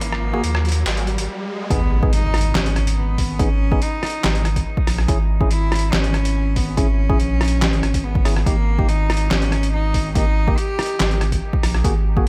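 A riser and impact sweep through a brief build-up that stops short before the drop at 1.7 seconds, launching a meditative, heavy deep dubstep cut in G# minor at 142 BPM in a half-time feel, where a round, up-front sub bass and a punchy layered kick anchor gritty, pitched-down sampler drums with handclaps, rim clicks and hi-hats, a bright, nasal bowed cello sings the melody through dub echo, and a hollow, chorused organ stab sits in the background of an echo-heavy mix moving from G#m through C#m/G# to D#/G#.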